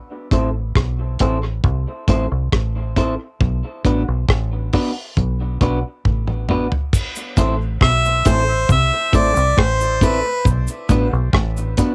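A slow, straight 4/4 dub reggae groove at 68 BPM rests on a damped 70s drum kit with a tight kick, rim clicks, hi-hat, toms and crash, its dry, rolled-off sound sitting up front. A deep, round fingered bass, foam-muted and dark, anchors the A dorian harmony as the chords move between Am and Bm, while a slightly broken-up, compressed electric guitar plays picked accompaniment through a low-pass filter and dub echo. The opening stretch is a break that ends with a drum fill from 6.0 to 6.9 seconds, and a cabasa joins at 6.9 seconds. Shortly after, a second guitar adds a fingered riff in the background, softened by lush chorus. At 7.8 seconds a clear harmonica takes the melody up front, with vibrato and scooped notes, filtered and echoing. The mood is meditative and hypnotic, with light reverb and the soft grain of a home cassette recording, tuned to A4 = 438 Hz, in this short excerpt cut from a longer piece.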